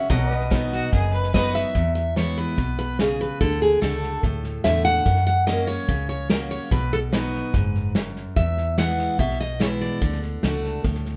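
A bright, up-front steel-string acoustic guitar picks the melody over a second full-bodied acoustic guitar's accompaniment, while a clean pedal steel lays sustained chords with volume swells until 1.7 seconds and a distant, rich fiddle adds a brief bowed line with light vibrato. A dark, round, foam-muted electric bass and a small-room acoustic drum kit, with bundle sticks on hi-hat, snare and a tight kick, carry this nostalgic, sunny honky-tonk fragment in a straight four. Finger squeak on fresh strings and a moderate large-studio reverb give it a lived-in feel, and the lead guitar stops at 10.2 seconds as the band rolls on briefly.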